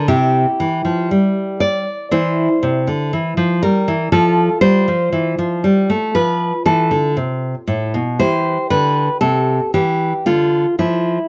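The recording has a close, up-front sound in a room with light reverb, cut from a longer piece. It is a classical, baroque-style dance for a solo nylon-string guitar, grave yet flowing in mood, played at about 59 BPM in 4/4 with a rubato feel and tuned to A4 = 438 Hz. The acoustic guitar carries the whole 11.3 seconds with a warm, fresh-stringed tone, fingerpicked across a range from A2 to D5, and finger squeak gives it an intimate, human touch. The harmony moves from C to F at 4.1 seconds, returns to C, and turns toward D minor at 10.3 seconds.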